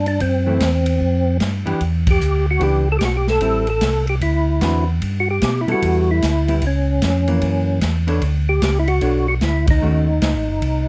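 A close, detailed, nearly dry sound frames this late-night, soulful soul jazz organ trio excerpt in B minor at 150 BPM, where a fat, percussive tonewheel organ with key click carries the melody over a round, dark organ bass, both turning through chorus vibrato and a slow rotary speaker, while a clean hollow-body electric guitar comps from 0.5 seconds and a natural, punchy drum kit with hi-hat, ride, snare and kick swings along, the band hitting accents at 2.0 and 9.6 seconds.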